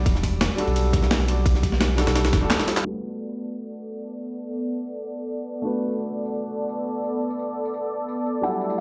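Straight, rolling breakbeats drive this dreamy liquid drum and bass fragment: gritty, tape-toned sampled drums with handclaps, hi-hat, snare and tambourine run throughout, while a tight electronic kick, a pitched-up jungle kit with high-pass-filtered hats, ride and snare, and a deep, full sine sub bass drop away as a drum fill arrives around 2.5 seconds, leaving an up-front grand piano with tape echo and a smooth, detuned sawtooth pad with chorus and sidechain pumping under a filter sweep from 2.9 seconds, before a soft, round, dark pluck appears at 8.4 seconds, the mix steeped in lush hall reverb and a stone-room haze.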